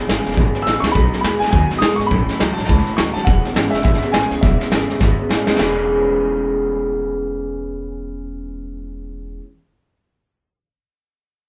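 Rockabilly with a rowdy, upbeat swing, cut from a longer piece, where a dark, mellow upright piano carries the melody until 5.3 seconds over a slightly broken-up, lo-fi electric guitar riff, a full-bodied picked steel-string acoustic guitar in the background, a woody, thumpy pizzicato upright bass, and an up-front vintage brush kit with punchy kick and dark cymbals that drops out at 5.7 seconds, all playing live together in a small, wet room.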